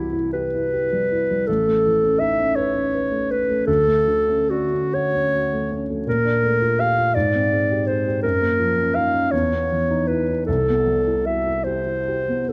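A dark, close-miked clarinet leads this 12.5-second excerpt, singing a classical-style solo melody between E4 and F5 that sits up front. Beneath it, a mellow, smooth baby grand piano with a vintage character supplies the accompaniment from A1 up to B4, also placed up front, and both instruments share the same shadowed tone. The music is an impressionist chamber duo in 6/8, moving slowly at 45-57 BPM counted in dotted quarters with a flexible, rubato feel, and the mood is luminous and pastoral. The harmony glides through lush chords, Cmaj7, Aadd9, Dmaj7, then Bbmaj7, Abmaj7 and F#maj7 in quick succession, before settling on an open E5 at 9.3 seconds and returning to Cmaj7 at 10.5 seconds. A moderate recital hall reverb gives the pair a gentle sense of space as this passage, lifted from a longer piece, unfolds.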